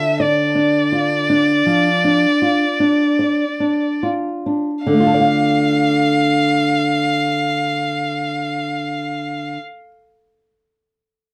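Romantic duo for violin and classical guitar, elegiac and yearning, moving very slowly at 35-43 BPM in 4/4 with a free, rubato feel in D minor, and it opens by slowing down over its first 4.9 seconds. A rich, bowed solo violin carries the expressive melody between D5 and F5, with vibrato and portamento, while an up-front nylon-string guitar, thumb-plucked and small in tone, supplies the accompaniment from D3 to F5. The dry, close studio sound has a 1970s character and moderate ambience; the violin stops at 9.5 seconds and the guitar carries on to 9.9 seconds in this fragment of a longer piece.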